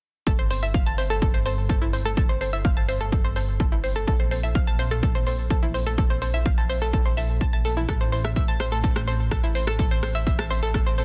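Dramatic and driving, this melodic techno excerpt runs at 126 BPM in a straight 4/4, built on an overdriven, heavy electronic kick up front and a layered techno kit of smooth hi-hats and rim clicks with its own grit. A dark, detuned saw bass rumbles low with a beating, deep tone and sidechain pumping, while a round analog pluck plays arpeggios with a filter sweep, chorus, delay and its own pumping over chords moving from Gsus4 to Bbsus2 to Am. The mix is dry, dense and heavily limited in a modern style.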